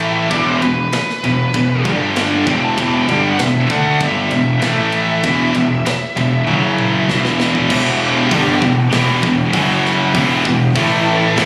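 This heavy, dark metal excerpt in E minor opens at once with everything but the strings: a distorted, picked lead guitar with a warm tone sings its melody between B4 and A5 over a pair of bright, high-gain rhythm guitars playing a riff, one up front and the other set further back. Underneath, a growly, fuzz-driven picked electric bass sits prominently in the mix, while a tight acoustic kit with a tight kick, a medium-tuned snare, hi-hat, ride, crash and toms drives a straight 4/4 at 98 BPM. The harmony moves between E minor and power chords on E, G, A and F#. A drum fill begins at 6.5 seconds, the lead drops out at 7.0 seconds, and at 7.7 seconds the groove falls into half time as a lush bowed string section with vibrato and a smooth top adds sustained chords in the background. The sound carries a small-room ambience with studio reverb and the rough character of a phone recording made in the room.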